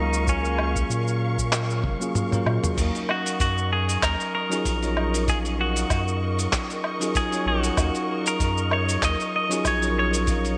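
Wistful and relaxed, this sunset chillout excerpt moves at 96 BPM in Eb minor with a lightly swung sixteenth feel, a clean, twangy electric guitar carrying the melody through subtle chorus and digital delay over a bell-like tine electric piano with its own delay, lush bowed strings with vibrato and portamento roughened by vintage 12-bit sampler grit, and a round, dark analog bass. A dusty, tape-warm soul sampler-style kit sits up front with cabasa, handclaps, hi-hat, toms, woodblock and crash, joined at 0.3 seconds by a deep, overdriven electronic kick that drops out from 2.2 to 2.8 seconds during a drum fill. The harmony moves from Gbmaj7 to Ebm7 at 2.8 seconds, all set in a moderate hall reverb with bright 1980s-style digital production.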